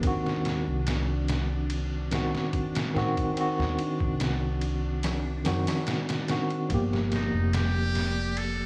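A compressed, gritty sampler-style kit sits in a small room ambience at the front of this brooding trip hop excerpt, which moves at 72 BPM in 4/4 with a light swing on the sixteenths. The pitched-down drums pair a thumpy kick and a medium-tuned snare with ride cymbal, while a woody pizzicato upright bass with steel strings plays low beneath them. A clean tine electric piano through a combo amp carries the chords from Ebm6 to Gm7 at 6.7 s, coloured by tremolo, tape echo and a filter sweep across its whole length. Far behind, a very quiet string-like drone hangs on a tense, sawtooth tone with a noise layer, slow attack, phaser, vibrato and its own reverb. At 7.1 s a muted trumpet with a metal mute enters as the solo voice, brilliant yet buzzy and thin with a smooth top, light vibrato and scooped notes in a pop style, just before the clip cuts off.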